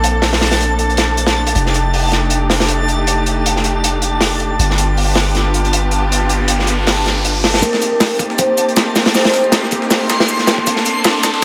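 Drum and bass with a jungle feel, this cut from a longer piece carries a nostalgic, raw mood over a swung 4/4 groove. A crunchy acoustic breakbeat kit sits up front with a tight kick, a medium-tuned snare and a saturated, gritty character under a rolled-off top, while a deep, sine-like 808-style bass holds long, mellow notes until 7.6 seconds. A lush, bowed string section sustains smooth chords with vibrato throughout, and a reversed, granular swelling texture glimmers brightly in the background with its own built-in reverb. An electronic riser enters in the background at 5.9 seconds, leading into a build-up where a second, sampler-style breakbeat kit, compressed, pitched up and tape-warm with a shaker alongside hats and snare, joins in. At the same point, a vibraphone played with soft mallets offers a brief, metallic, ringing phrase through dub echo, as the harmony moves from Bbmaj9 through F13 and G7 to Cm7 and back, all set in a moderate echo chamber reverb.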